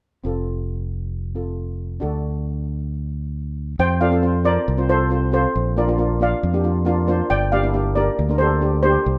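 Calypso at 136 BPM in 4/4 with a straight feel, sunny and carefree, in F major and cut from a longer piece. A steel pan in the double seconds range, played with soft rubber sticks, carries the accompaniment from 0.2 seconds, its metallic, mellow tone set in a boxy small room, while a fingered electric bass, bright, punchy and direct, holds the low end from the same moment. At 3.8 seconds a second steel pan takes the melody, shimmering and airy, sitting up front a touch louder than the accompanying pan. A steel pan adds a short fill between 6.7 and 7.3 seconds, just as the harmony moves from Bb to Gmadd9. The chords pass through F and D before returning to F and Bb. Moderate studio reverb surrounds a rough home demo mix.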